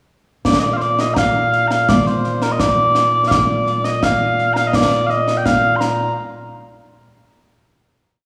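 A straight 2/4 pulse at 84 BPM sets a ceremonial, proud tone for this brief, complete piece of Scottish traditional pipe music in Bb major. Concert snare and bass drum enter at 0.4 seconds with a marching snare pattern, their bright cymbals sitting up front in an acoustic small-room sound. At 0.5 seconds the small bagpipes take the solo melody, mellow and sweet, sustaining a continuous modal line with ornaments and vibrato that ranges from Bb2 to C6 and sits a little louder than the drums. Both parts play through to 6.1 seconds, and a final hit closes the piece at 6.2 seconds. A generous scoring-stage reverb wraps the whole performance in the resonance of a church or concert hall.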